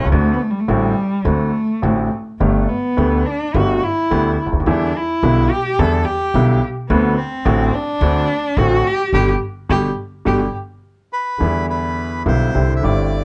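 A melancholic, dramatic tango fragment opens with an up-front, dark bowed cello soloing with vibrato and portamento over clear, woody upright piano and pizzicato upright bass in a loose rubato feel, the band accenting from 9.1 seconds before the cello falls away at 10.4 seconds and a reedy bandoneon takes the melody at 11.1 seconds, all in a light reverb and a warm, shadowy production.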